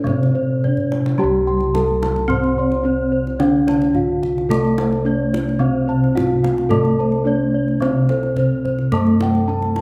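Bronze metallophones ring out a ceremonial, shimmering Javanese gamelan melody in C pelog barang at 109 BPM, joined by lower metallophone accompaniment and high arpeggios shared with round, beating bossed gongs that also hold the bass, while a deep kendang adds a fill from 0.6 to 1.2 s, set in a moderate recital hall reverb in this cut from a longer piece.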